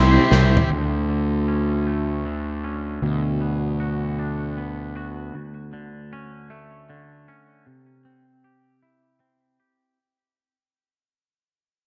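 Post-rock in 3/4 with a cinematic, soaring mood, cut from a longer piece, opens on a dense burst where a pair of crunchy overdriven guitars (one phased and set in the background) play a riff, a ringing, bell-like glockenspiel with brass mallets arpeggiates through delay, a barely audible detuned analog pad holds chords, and a loose indie drum kit with a medium-tuned snare and toms rolls a fill. At 0.7 seconds that opening burst falls away and the recording begins to fade, while the up-front, round fuzz bass continues until 5.3 seconds. The clean, twangy electric guitar carries its arpeggios through spring reverb and delay from the start to the end at 10.0 seconds, all in a dark small-room production.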